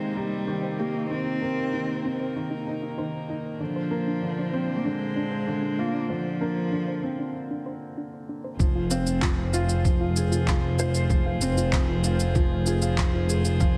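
A straight 4/4 pulse carries this intimate, cinematic piano-and-strings electronica excerpt, where a felt-muted upright piano plays a soft, mellow riff up front beside a bowed cello melody with vibrato and portamento, both trailed by delay, over floating sul tasto string quartet chords that pump with sidechain and a very quiet, dark pluck arpeggiating with chorus. The cello stops at 7.4 seconds for a short break, and at 8.6 seconds the drop arrives with a muffled, thumpy, pitched-down kick, tape-warm electronic shaker and handclaps, and a lush bowed double bass section holding F1 with its own sidechain pumping. A moderate hall reverb and small room ambience frame the parts as the chords move from Cm7 through Bbadd9 to Fm.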